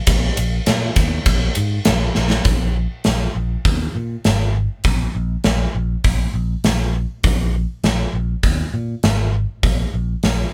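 Hard rock with a heavy, menacing mood, this short excerpt pairs a picked electric bass, bright, amped and growly with a punchy attack, against a gated 80s drum kit of tight kick, medium-tuned snare, hi-hat, ride and bright cymbals in a bright, gated stone room. Both parts sit up front and play from start to finish in 4/4, captured as a band performing live in one room with light reverb. A drum fill at 2.2 seconds marks the move into the second section.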